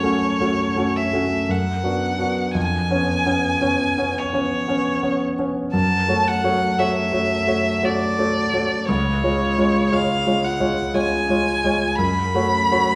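This is a romantic classical duo for violin and grand piano, melancholic and solemn in mood, moving slowly at 57 BPM in 3/4 with a rubato feel in F# minor. A single bowed violin carries the melody from C#5 to B5, its rich, smooth tone shaded by vibrato and set at a slight distance. A concert grand piano accompanies from C#2 to C#5 with a clear yet worn sound and deep bass, sitting a touch louder than the violin. Both instruments play together across the whole 13 seconds, which are cut from a longer piece. The harmony moves from F#m through Bm/F# and C#7/E# before returning to F#m, then passes through C# at 8.9 seconds and resolves to F#m at 12.0 seconds. The pair sounds as if captured in a church or concert hall, with a generous recital hall reverb of 1.2 seconds.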